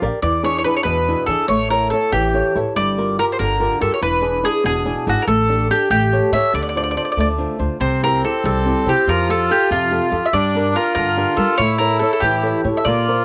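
A picked mandolin leads this passionate, romantic Italian folk serenade, its round, double-string tone sitting up front as it carries the melody between F4 and E5. Beneath it, a fingerpicked flamenco guitar with dark, old-string character plays the accompaniment, while a pizzicato upright bass on steel strings adds a woody low end. The piece moves in a straight 6/8 at 95 beats per minute, counted in dotted quarters. At 7.8 seconds a reedy, hollow accordion joins up front with a narrow second line. The harmony starts on E7 and passes through A, Gm7, A7sus4, Dm7, C, Fadd9 and Gm before resting on A. Light reverb and a small-room ambience frame this home cassette recording, with the mandolin, guitar and accordion carrying a tape coloring, in a short excerpt cut from a longer piece.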